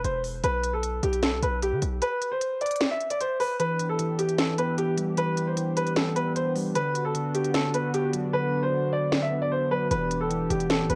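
A clear concert grand piano carries the melody through a low-pass filter and tape echo in this eerie, menacing trap excerpt at 152 BPM in a half-time feel, set in E minor. Crisp hats and a sharp snare from an up-front electronic drum kit run throughout, the hats dropping out from 8.3 to 9.9 seconds, while a punchy, heavy 808-style bass hits during the opening break before dropping out until 9.9 seconds. At 3.6 seconds a mellow tine electric piano and a smooth, detuned sawtooth analog pad with chorus enter over Em7 and Bm, with cassette tape coloring the drums, electric piano and pad inside a light digital reverb.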